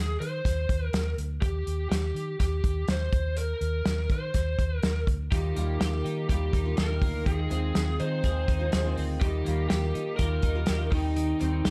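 A dark, softly reverberant production frames this short, nostalgic yet bright slice of jangly indie pop, moving at 123 BPM in a straight 4/4 in Eb major. A lo-fi, overdriven lead guitar through a small cranked amp carries the picked melody from the very start, over a round, foam-muted vintage electric bass that sits up front and a loose acoustic drum kit that enters at 0.2 seconds with a tight kick, medium-tuned snare and hi-hat in a small room. At 5.3 seconds the harmony opens from a held Eb into Ebadd9, Fm7/Eb and Cm/Eb. That same moment brings in a twangy, compressed twelve-string electric guitar playing clean picked arpeggios through an ensemble chorus, alongside a softly placed steel-string acoustic guitar picking accompaniment with an auditorium glow. The chiming twelve-string against the gritty lead gives the passage its jangle, and the passage is cut from a longer piece.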